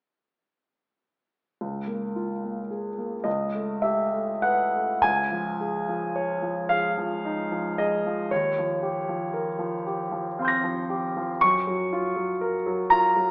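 Luminous and dreamy, this short fragment of impressionist solo piano drifts in a rubato triple metre, a clear concert grand sitting up front with deep bass and long, natural sustain as it spans from low Db2 to a high Bb6. Lush harmonies such as Dbadd9, Eb13 and Gbmaj7 bloom through a wet recital-hall reverb, while an AM-radio coloring lends the sound a faded, distant cast. Cut from a longer piece, the piano enters at 1.6 seconds, moves into a new passage at 5.0 seconds and plays on until 13.3 seconds.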